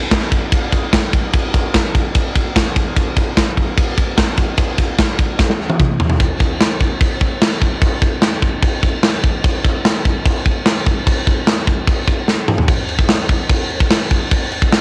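Metal drum excerpt at 148 BPM in a straight 4/4, dark and heavy, where a tight acoustic kit of kick, snare, toms, ride and crash plays alone from 0.1 to 14.8 seconds, up front and mid-forward with bright cymbals and a medium-tuned snare, carrying a cassette-tape grit in a big room with light reverb, with fills at 5.4 and 12.3 seconds that lead into new sections.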